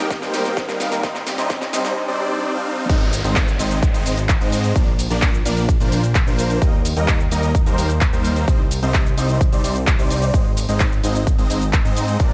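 Euphoric and uplifting, this festival progressive house clip, cut from a longer piece, moves in a straight 4/4 pulse from a short build-up with a drum fill into a full drop at 2.9 seconds. Huge, detuned supersaw chords sit up front with a bright, phasered sheen, sidechain pumping and digital delay, carrying a sustained riff through chords that move from Eb and Cm to Ab and Bb. Beneath them, a fat, nasal analog bass with a saturated, filter-plucked edge pumps along, while a lush, chorused unison pad glows in the background only until 2.0 seconds. A punchy, layered electronic kick drives the track from the front, supported by a big-room kit with a huge snare, handclaps, hi-hats, shaker and crash cymbal. A riser and downlifter hover in the background until 6.6 seconds, and a light reverb gives the mix a touch of space.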